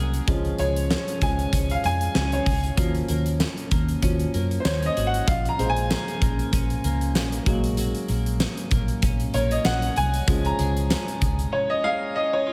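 A clear concert grand piano leads this 1980s-style pop excerpt, its open, up-front tone reaching into a deep bass as it carries the accompaniment and takes a solo across the whole 12.5 seconds. The mood is urgent and moody at 96 BPM in 4/4, with a light swing on the sixteenths. A bright, twangy twelve-string electric guitar plays a clean, picked riff, its compressed sound dressed in lush chorus and digital delay. Underneath, a vintage muted fingered electric bass gives a dark, round, foam-muted punch until 11.4 seconds, while a huge arena drum kit of hi-hat, kick, fat snare and tambourine sits up front with gated reverb and a big-room boom. The harmony moves from Db through Ebm7, Bbm7 and Gbadd9/Bb before returning to Db at 10.3 seconds, all set in a light small-room ambience.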